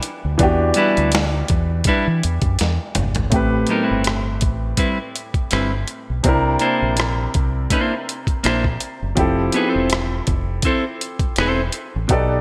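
A slow 4/4 groove at 82 BPM rolls along with a 56% swing on the sixteenths, carried by a gritty, compressed boom bap sampler-style drum kit with a thumpy kick, a medium-tuned snare, rim clicks, hi-hat and toms, all bathed in gated reverb. This soulful, introspective stretch of R&B and neo-soul is cut from a longer piece, and a drum fill from 2.6 to 3.3 seconds marks the turn into its second section. A deep, round dub-style fingered electric bass sits up front, direct and amped, anchoring the low end, while a smooth, vintage-sounding grand piano supplies warm accompaniment. From 0.8 seconds a clean, picked electric guitar with a shadowy tone adds a second line in its middle register. The harmony opens on Em7 and then moves through Am9, C9 and Fmaj7, all framed by a lush hall reverb and a bright, 1980s-style digital production sheen.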